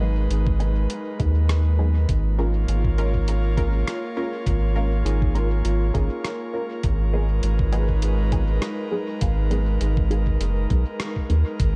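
A lightly swung sixteenth-note feel in four underpins this hazy, spacious ambient dub clip, with a thumpy, pitched-down electronic kick arriving at 0.5 seconds beside a muffled lo-fi sampler kit of hi-hat and rim click carrying dub echo. A round, deep analog bass sits up front beneath airy, breathy pad chords with chorus, while a muted filtered chord stab soaked in phaser, lush chorus and dub echo, and a pure FM synth bell playing arpeggios through chorus and echo, drift in the background. The dark, dry production moves between minor seventh chords, and the band lands an accent at 11.0 seconds.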